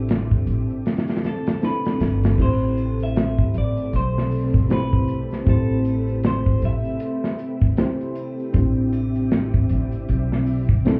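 Trip hop at 78 BPM in A minor with a swung 16th feel, this brooding, cinematic cut drifts between Cadd9/A and Am9. A twangy, picked clean electric guitar carries the melody through dub echo until 8.1 seconds, over a reedy electric piano with tremolo and tape echo that begins under a filter sweep, and dark, full-bodied string-machine cellos with ensemble chorus. A woody, thumpy pizzicato upright bass and a punchy, airy country drum kit sit up front, with a faint, soft-handed tube shaker and triangle, while the whole mix sounds muffled through a wall, bathed in club reverb and vinyl crackle.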